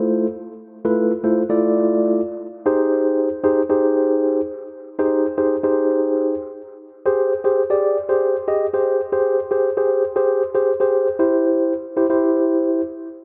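A light reverb and an echo-heavy mix surround this short pop excerpt, cut from a longer piece, which sits at 116 BPM in straight 4/4 with tuning at A4 = 439 Hz. A single tine electric piano carries everything alone from 0.0 to 12.8 seconds, its mellow, clean tone heard up front as if through built-in speakers and trailed by tape echo. It ranges from A3 to Eb5, opening on Fmaj7/A before moving to Abmaj7 at 2.7 seconds and finally reaching C at 11.2 seconds. The piece passes through three brief sections, with the last beginning at 11.2 seconds. The mood is euphoric and carefree, carried by the piano's warm glow and the repeating echoes around it.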